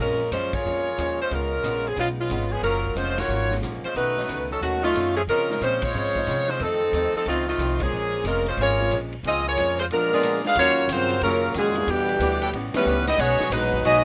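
A swung 4/4 groove from a natural, big-room drum kit with a punchy kick and a woody, growly pizzicato upright bass drives this brassy big band swing excerpt, with the full band hitting sharp accents throughout. A bright, tight, up-front saxophone section carries the melody over a dark, clean hollow-body archtop guitar in the background and a very quiet, intimate baby grand piano with audible action noise, which sounds briefly at the start and returns at 3.5 seconds. A jazz-style trombone section with light vibrato adds a second line from 9.9 seconds, and a tight trumpet section punches in stabs from 10.6 seconds, all in a rough home-demo mix with light reverb.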